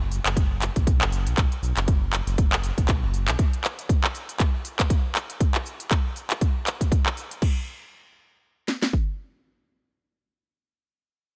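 A swung sixteenth-note groove at 119 BPM in 4/4 drives this excerpt of afro house, its feel warm and spiritual. Up front, a layered electronic house kit lays down a punchy kick and a cracking snare. An afro-pop kit, also electronic and forward in the mix, adds a crash cymbal, handclaps, a shaker and silky hi-hats. Underneath, a mellow synth bass blending sawtooth and triangle tones carries a ring-modulated edge, a fast attack, sustained notes and a touch of vibrato, all pumped by sidechaining. The bass stops at 3.4 s and the afro-pop kit at 7.5 s, leaving the house kit to play on until 9.1 s in a dry room.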